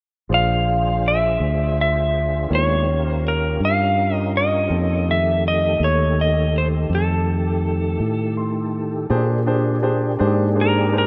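Set in a slow 12/8 at 55 BPM, this soulful, laid-back blues excerpt features a clean, compressed lap steel guitar carrying the melody with slide and volume swells over a round, dark fingered electric bass, while a bright, woody upright piano with audible action noise accompanies and adds a fill from 8.0 to 9.1 s, a lightly overdriven tonewheel organ holds sustained chords through chorus vibrato, key click and a slow rotary speaker, and a lush hall reverb fills out the rough home-demo mix as the harmony moves from Bb7 through Eb7 and F7 to a Bb13 at 9.1 s.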